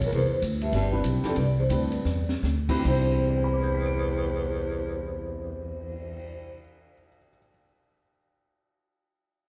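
Sophisticated and swinging, this short excerpt of small-group jazz in the swing and bop vein opens on a lush Cmaj9 harmony and eases into a slowdown across its first few seconds. A metallic, ringing vibraphone carries the melody with a fast motor vibrato, while a breathy baritone saxophone supplies a second line, its whispered subtone, soft attacks and scooped notes giving it an intimate feel. Up front, a woody pizzicato upright bass anchors the low end, and an open acoustic drum kit with a high-tuned snare, boomy kick, hi-hat, ride, crash and a cymbal swell keeps the swing going, slipping in a short fill at 2.1 s before falling silent at 6.2 s. A natural concert grand piano enters at 0.9 s with accompaniment that spans deep bass up to high notes, its action noise audible. The whole group sits back in a large studio room, bathed in a generous wet reverb.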